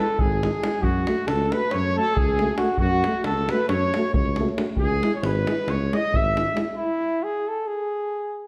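A warm, up-front flugelhorn leads a wild, virtuosic Balkan brass band piece in 9/8 at 274 BPM, with a clear, distant trumpet on the second line, a mellow jazz-style trombone with vibrato and scooped notes, and a roomy euphonium with light vibrato in the background, over a soft-attack tuba bass and a deep davul; together they rush ahead through C#m and F#m in a reverberant recital hall until the band stops at 6.7 seconds and the flugelhorn carries on alone to 8.5 seconds.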